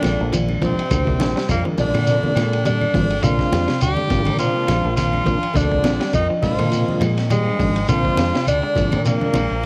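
An edgy, forceful tenor saxophone carries the melody up front with vibrato and a punchy, close-miked bite, riding a funky, driving afrobeat groove over a single Bb7 chord in this short cut from a longer piece. A round, dark fingered bass anchors a gritty, saturated breakbeat kit with a high-tuned snare and tight kick, while low-tuned congas, a grainy shekere and faint woody claves fill out the percussion. In the background, a distant trombone section and a soft, ringing kalimba share a second line, a slightly broken-up, twangy guitar picks arpeggios, a clean, very quiet guitar adds stabs, and a smooth tonewheel organ with key click and slow rotary swirl accompanies underneath, all captured as a lo-fi home cassette recording in a small room.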